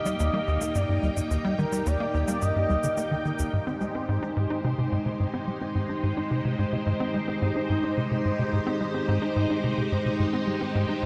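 Drenched in a huge, wet ambient reverb with a long 7.3-second tail, this expansive, luminous piece of sequencer-driven space music moves at 108 BPM in a straight 4/4. A tight, punchy sequencer bass drives the whole passage with a dark sawtooth-and-square riff whose plucked, quickly decaying filter keeps evolving under analog chorus and delay. Above it, a vintage string machine holds lush, full ensemble chords up front, mellow and slow to bloom, with a sub octave and a moving notch. In the opening bars over Ebmaj7, a smooth, nasal synth lead sings a brief expressive melody with vibrato, chorus and delay until 3.3 seconds, while dry, overdriven electronic congas and shaker tick along until 3.5 seconds. The harmony then shifts to Abmaj7 and a very quiet, bright gated texture pulses in time for the rest of this excerpt from a longer work, trailing a long release through its own reverb.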